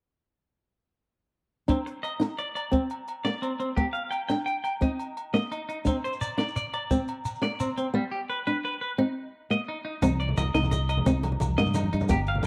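A dry, close 1970s-style studio sound frames this bittersweet, danceable highlife guitar band excerpt in C minor, moving at 115 BPM in a straight 12/8. From 1.7 seconds a fingerpicked steel-string acoustic guitar sits up front beside a bright, twangy clean electric guitar playing arpeggios with spring reverb and slapback echo, over a dark, smooth compact cocktail drum kit with a high-tuned snare and quiet ringing agogo bells, while a grainy shekere joins at 5.9 seconds. At 10.0 seconds the harmony settles on C minor as a round, punchy fingered electric bass and low-tuned, saturated congas played with soft hands come in.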